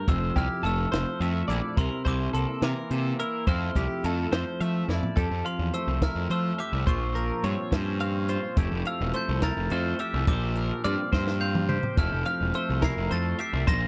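In 6/8 at 71 BPM, this playful, wistful slice of math rock and midwest emo in F major sets a sparkling, bell-like glockenspiel melody with a slapback echo over a twangy electric guitar drenched in lush chorus and a chiming twelve-string electric guitar picking arpeggios. A fuzzy, overdriven picked bass and a compact cocktail drum kit with a high-tuned snare and tight kick sit up front, with drum fills at 4.9 seconds and again from 11.1 to 12.0 seconds. The dry, close sound recalls a 1970s studio, as the chords drift from Fmaj7 and C7 into Fmaj9, Bbmadd9 and Bb69 once the second section begins at 5.2 seconds.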